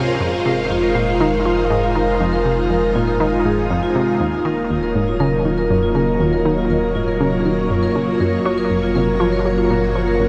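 Drenched in a wet shimmer reverb with a long tail, this expansive, mysterious stretch of sequencer-driven ambient space music is cut from a longer piece and moves through Fm7, Ebm7 and Gbmaj7. A lush, vintage string machine holds up-front sustained chords with ensemble chorus, while a metallic, ringing vibraphone with medium mallets spins delayed arpeggios above it. Underneath, a nasal, wave-folded analog pluck repeats a bright riff through chorus and delay, and a deep, dark round analog bass anchors the low end.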